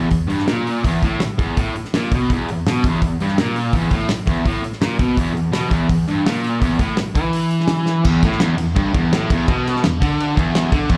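A double-tracked, compressed fuzz guitar drives a low, picked riff through this rowdy, swaggering garage rock excerpt at 167 BPM in 4/4, tuned to A4 = 441 Hz, with its distortion and slapback echo up front beside a cloth-damped, thuddy acoustic kit of fat snare, tight kick and dark crash, ride and hi-hat, all heard as a live gig through the venue's PA with moderate club reverb, and a drum fill at 7.9 seconds leads into a new section at 8.0 seconds.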